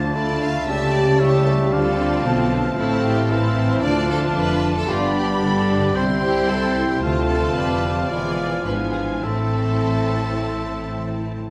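Expressive, lush violins carry the melody in this dramatic, lively yet graceful fast romantic orchestral movement at 112 BPM in A minor, with rubato, as a second violin line, a punchy oboe, a very quiet clarinet and an airy, hollow flute group weave secondary lines over a clear bassoon, focused violas, mellow French horn chords, ringing fingerpicked harp arpeggios and rich cellos and double basses, all set in a reverberant recital hall.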